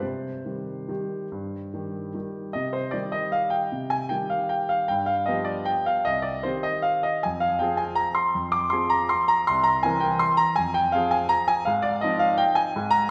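Sparkling and graceful, this classical piano waltz in C minor sways in 3/4 with a rubato feel, its tempo drifting between 136 and 171 BPM. A solo concert grand sounds clear, open and up front, with deep bass and long sustain across its range from C2 to D6, as the harmony moves from C minor through G7 and F minor to Fm7/Ab. The piano sits in a wet concert hall reverb with a rolled-off top end, and the recording is cut from a longer piece.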